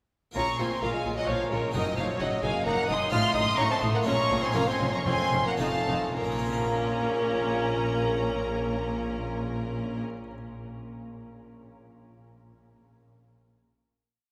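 A lush, vibrato-rich symphonic violin section carries the melody in this short, dramatic baroque-style concerto movement in Bb minor and 3/4, joined by a present, lightly vibrating bassoon doubling the tune at the octave and a smooth chamber violin section shadowing it in thirds and octaves. Rich violas hold sustained chords and repeated notes over dark cellos and distant double basses, while a dry, brilliant harpsichord sits in the background with rolled chords. The driving pulse, between 104 and 131 BPM, slows from 2.4 to 6.2 seconds before the ritornello gives way to a final chord that rings on in a cavernous cathedral reverb.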